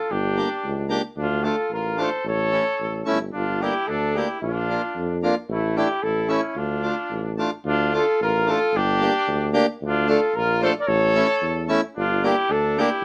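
Close, detailed microphones and a light reverb frame this jolly, festive alpine dance-band passage in D minor, moving at 111 BPM in a straight 2/4 and cut from a longer piece. A mellow flugelhorn with light vibrato and a soft attack carries the melody up front, while a clear, vibrato-tinged trumpet sounds a second line from a distant, roomy position. A vintage-toned tuba lays down the bass and a reedy, hollow accordion enters at 0.4 s with chords cycling through Gm, Dm and A across two matching passes.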